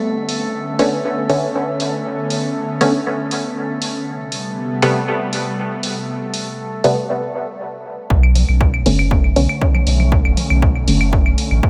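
Cavernous and hazy, this dub techno fragment at 119 BPM in B minor drifts over Bm9 and Am9 chords before returning to Bm9 at 8.1 seconds. An airy, breathy pad holds sustained chords with chorus and sidechain pumping, while a calm glass-harmonics texture of drifting sine overtones floats above it with its own reverb until it stops at 7.1 seconds. Up front sits a muted, detuned sawtooth chord stab with chorus, phaser and dub echo, taking on a filter sweep in the later passage. A dry, filtered electronic hi-hat ticks along from the start. After a short break, a punchy analog kick, a round sine sub bass and tape-tinged claves and congas all enter at around 8.1 seconds, giving the close of the excerpt a deep, pulsing weight under light reverb.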